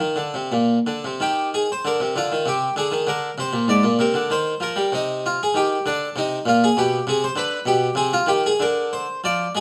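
A solo harpsichord, plucked and brilliant with a full, mid-forward Italian-style voice drawing on three sets of strings, sits up front in this classical, baroque-style suite movement cut from a longer piece. At 97 BPM in 3/4 with a rubato feel, the music is dance-like and flowing, moving through chords such as Bb, Cm11, Eb and Gadd11/B before settling on Dm. Close, detailed microphones capture the instrument within a moderate stone room reverb of 1.3 seconds.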